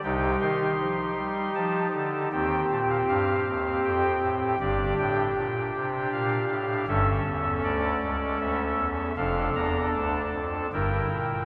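Heard from far back in a wet, darkly muffled church acoustic, this solemn classical chorale in three is a short section cut from a longer piece, played freely with rubato by a solo pipe organ whose soft, up-front oboe reed stop, baroque voicing and trembling tremulant span from deep bass notes to high treble through brooding minor harmonies.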